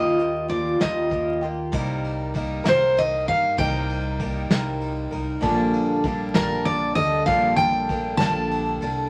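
Vinyl crackle and a moderate studio reverb frame this gentle, warm acoustic folk piece, cut from a longer work, at 65 BPM in 6/8, where a full-bodied jumbo steel-string guitar carries the picked melody up front with audible finger squeak over a boxy, shimmering, octave-doubled twelve-string, a woody, thumpy pizzicato upright bass and a dark, smooth brush kit with a punchy kick, moving from Ebadd9 to Cm7 at 1.7 seconds and Gmadd9/Bb at 5.4 seconds.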